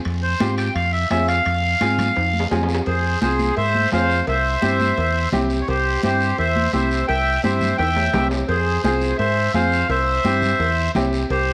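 Cumbia in F harmonic minor at a brisk 171 BPM, this fiery, passionate excerpt is led by a reedy, close-miked accordion up front, its slow beating adding warmth, over a round, punchy fingered electric bass and a brilliant, slightly detuned upright piano with long sustain. Damped, high-tuned congas sit in the background alongside ringing metal-shell timbales and cowbell, while a raspy, distant guiro scrapes along, and drum fills arrive at 2.2 and 7.8 seconds. The harmony moves between Fm and C in a moderate echo-chamber reverb, and the opening section gives way to a second at 2.9 seconds.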